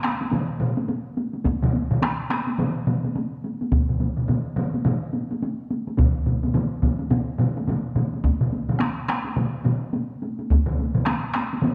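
Swung sixteenths drive a steady 4/4 at 106 BPM in this ceremonial, powerful passage of Japanese traditional taiko drumming, taken from a longer piece. Three taiko ensemble parts sound from the start: one struck with heavy sticks, compressed and saturated up front; another with heavy sticks heard close; and a hard-stick group set distant in a large room. A fourth hard-stick taiko ensemble, close and up front, joins at 1.5 s and drops out at 10.7 s, all within a dark production and the wet bloom of a scoring-stage reverb.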